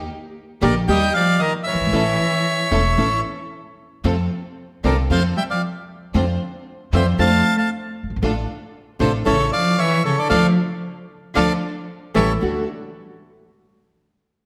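Tango with a passionate, dramatic rubato feel, led by an up-front reedy, airy bandoneon melody over a dark, expressive bowed cello second line with vibrato and portamento, full-bodied fingerpicked nylon-string guitar, a woody, thumpy pizzicato upright bass and smooth, focused string-section stabs in the background, with a band accent from 10.3 to 12.4 seconds, set in a moderate concert hall reverb.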